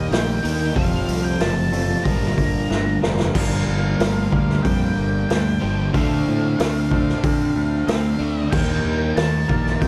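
Brooding and dreamy, this shoegaze and dream pop rock fragment moves at 93 BPM in G minor through Ebmaj7, Fadd9, Gm7 and Dm7. A raw, gritty garage drum kit with a punchy kick sits up front from 0.1 s and plays a fill leading into the second section at 3.4 s, while a growling, overdriven fingered bass drives underneath. In the background, a thick fuzz guitar with subtle chorus, a double-tracked overdriven semi-hollow guitar and a lo-fi guitar through a small old amp with reverse reverb stack their riffs. A very quiet, twangy direct-recorded clean guitar picks arpeggios, an octave-fuzz lead carries the melody through analog delay, and a lush, vintage string machine ensemble holds mellow chords until 3.3 s, all within a dark, warm production with light reverb.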